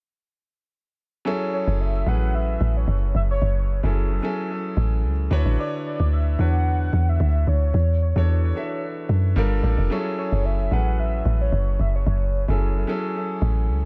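An echo-heavy small-room mix carries this hypnotic, deep amapiano excerpt in F# minor at 111 BPM with a 16th-note swing, where a dark, round log drum bass sits up front from 1.7 seconds beneath an intimate concert grand piano with audible action noise and dub echo, while a velvety, detuned sawtooth synth lead with chorus and vibrato floats a high melody over chords moving from F#m9 through Dmaj13 and E13sus4 to Gm9 and back to F#m9.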